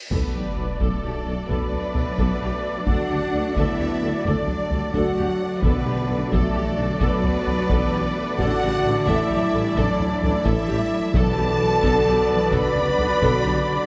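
Cut from a longer epic orchestral film score in B minor, this dramatic, relentless passage moves at 87 BPM in 12/8, opening with a huge, dark cymbal swell and sub drop as a hard-sticked taiko ensemble drives beneath sustained chords from mellow French horns, a smooth-topped trombone section, a focused string section and vintage-toned trumpet stabs. A close, expressive chamber violin section carries the melody over lush symphonic violins on a second line and even violas in accompaniment, while a soft-attack tuba and double basses anchor the bass, joined at 1.5 seconds by a cello section with vibrato and portamento. Timpani strike at 5.6 and 11.1 seconds, all set in a dark, warm concert hall sound with moderate reverb.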